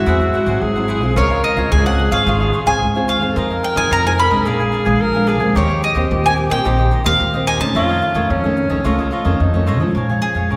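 Samba at 109 BPM in Bb minor, lively and bittersweet, cut from a longer piece, with a bright, picked bowl-back mandolin carrying the melody up front, a breathy, whispered tenor saxophone with vibrato and scooped notes playing a distant second line until 10.0 seconds, a crisp cavaquinho and a small, fingerpicked nylon-string guitar with old strings providing accompaniment, and a thumpy, woody pizzicato upright bass on gut strings, all set in the wet reverb of a church or concert hall over chords such as Ab7b13, Dbmaj7 and Bb7b9 before landing on Bbm7.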